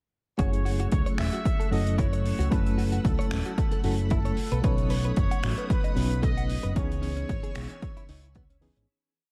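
An overdriven, punchy four-on-the-floor electronic kick drives this sleek, cosmic nu-disco piece at 113 BPM in F# dorian, alongside a round, syncopated envelope-filtered picked bass, a dry, dark 70s kit of finger snaps and hi-hat, a reedy electric piano with fast tremolo and sidechain pumping, lush string-machine chords with ensemble chorus, a clean, compressed electric guitar riff in the background, and a trumpet section playing call-phrase motifs through dub echo, moving from F#m7 to B7 at 4.4 seconds and C#m7 at 6.8 seconds as it fades out from 6.1 seconds.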